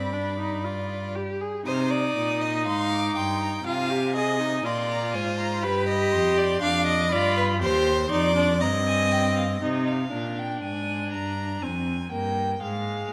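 All four bowed strings begin together on a G chord in this contemplative yet driving baroque-style fugue for string quartet, set in C minor at a steady 60 BPM in straight 4/4 time. The melody sits in the upper violin, a rich, distant voice that sings expressively with vibrato and portamento high above the ensemble. Just below it, the second violin carries a clear, focused line placed close and up front, until it drops out at 9.6 seconds as the opening material returns. The viola supplies smooth, even accompaniment in the middle register, and the cello anchors the bass with a soft attack, vibrato and expressive slides. The harmony moves from C minor through F minor, G7 and A-flat before settling on F minor with an added ninth, all bathed in a moderate scoring-stage reverb, in a short excerpt cut from a longer piece.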